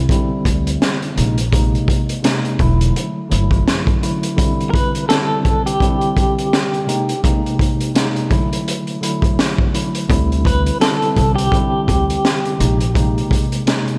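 Reflective and moody, this boom-bap hip-hop cut moves at 84 BPM with a swung 16th feel over D9sus4, Bb9sus4 and E9sus4 chords. A mellow tine electric piano with a cassette-tape tint sits up front beside a gritty, saturated breakbeat kit with a punchy kick and high-tuned snare, while a woody pizzicato upright bass thumps underneath in two stretches. From 4.7 seconds a clean, compressed electric guitar plays a fingered melody through tremolo and tape echo, and light reverb and small room ambience surround the mix.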